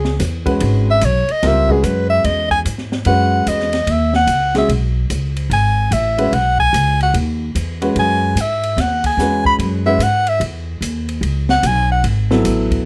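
A breathy, close-miked soprano saxophone solos with mellow vibrato over a woody, growly pizzicato upright bass and an open jazz kit with dark cymbals and a boomy kick, joined at 0.5 seconds by a smooth, vintage-toned grand piano, in this hypnotic, searching modal jazz excerpt swinging at 147 BPM in F# dorian on a sustained F#9sus4, with the bass and piano playing up front in a dry studio room.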